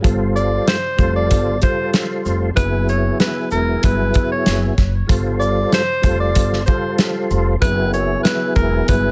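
Tough and moody, this boom-bap hip-hop excerpt rides a 95 BPM groove in 4/4 with a lightly swung sixteenth-note feel. A soul drum kit sits up front with a small-room sound, tight kick, medium-tuned snare, hi-hat and shaker, its top end rolled off. Beneath it, a woody pizzicato upright bass holds low around E1 to G1, while a smooth, clean tonewheel organ with key click, chorus vibrato and a slow rotary speaker carries the accompaniment through a cassette-tape haze. From 0.4 seconds a mellow tenor saxophone takes the solo melody in a jazz style, using subtone, vibrato and scooped notes, touched with tape echo. The harmony moves between G9sus4 and F#9sus4, and the whole recording sits in light reverb with a dark, softened top.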